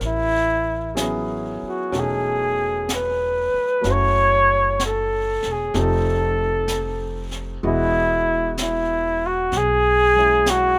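A mellow flugelhorn carries the melody up front in this tender, intimate jazz ballad, singing with vibrato and scooped notes in a vintage jazz style from 0.1 seconds on. Beneath it, a warm concert grand piano with a deep, natural bass supplies the accompaniment, moving through chords from Amaj13 to F#m7, F9 and Emaj9. An upright bass, plucked and growly with a woody, warm tone and steel strings, holds down the low end. A jazz brush drum kit with a high-tuned snare and hi-hat keeps a soft, natural small-room pulse. The tempo is a slow 63 BPM in 4/4 with a gentle swing on the eighth notes, and the dry sound, with little reverb, keeps the players close in this short cut from a longer piece.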